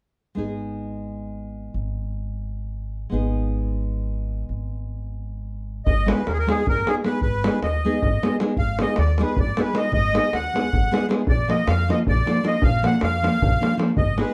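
A restless 7/8 pulse drives this fiery Balkan wedding-band piece at 310 BPM in eighths, with a straight feel, centered on Ab dorian with a raised fourth and tuned slightly below standard pitch. From the opening moments, a fingerpicked nylon-string guitar in a classical style and a woody pizzicato upright bass with steel strings sit up front, laying down the accompaniment and low end over an Abm chord. At 5.9 seconds the accordion takes the melody, its reedy, sweet and airy tone colored by a light tremolo tuning and a plate reverb, while a deep, band-limited davul with a vintage character joins in. The harmony shifts to Bb at 11.3 seconds before this cut from a longer piece closes at 14.3 seconds. The production is dark and warm, set in a moderate studio reverb.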